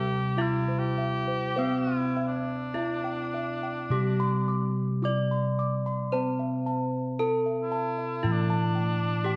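Javanese gamelan with a ceremonial, shimmering mood, this short cut from a longer piece sets a ringing bronze metallophone melody, struck with a horn mallet, over a mellow, padded metallophone accompaniment, while a warm, soft-attacked cor anglais with vibrato sings a second line, up-front bossed gongs add airy arpeggios and a round, beating bossed-gong bass anchors the low end, the ensemble blooming in the reverb of a recital hall.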